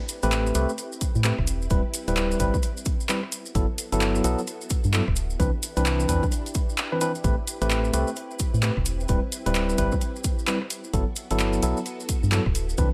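Set in a digital ambience, this short excerpt of soulful, bouncy UK garage in the two-step style moves at 130 BPM in 4/4 with a 62% swing on the sixteenths. Clean tine electric piano stabs sit up front through a tape echo, tracing a jazzy cycle of Am9, D13sus4, Gmaj13 and Cmaj9. Beneath them, an organ-like FM bass, also up front, is hollow, dark and percussive, with a fast attack that then decays. A layered, produced house kit of handclaps, hi-hat and rim click is joined by grainy, mellow maracas from a small room, and a punchy electronic kick enters at 1.0 seconds. In the background, a silky vintage string machine holds soft, slow-blooming chords through an ensemble chorus and sidechain pumping, giving the groove a gently breathing pad.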